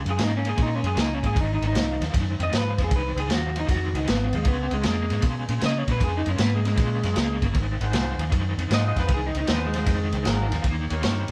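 Gritty, swaggering electric blues shuffle, cut from a longer piece, where an overdriven, tremolo-laced guitar riff and a round, foam-muted bass sit under a slightly broken-up, lo-fi guitar solo, with a muffled vintage kit of tight kick, snare and dark ride cymbal up front, and a mellow jazz-style horn section adding stabs from 7.8 seconds, all captured as a band playing live in one room with light reverb.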